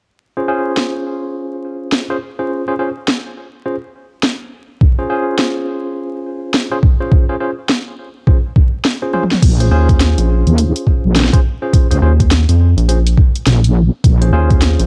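Vinyl crackle hangs over this swaggering, playful glitch hop excerpt, where a bright, barky tine electric piano plays stabs through low-pass filtering, delay and sidechain pumping, joined by an up-front electronic drum kit with a cracking snare, hi-hat, toms and crash. A gritty, pitched-down, overdriven kick arrives at 4.8 seconds, and after a drum fill at 9.1 seconds the music shifts. At 9.4 seconds a heavy, dark, detuned wobble bass with chorus and tube saturation comes in, soon followed by a rubbery, hollow, bouncy square bass.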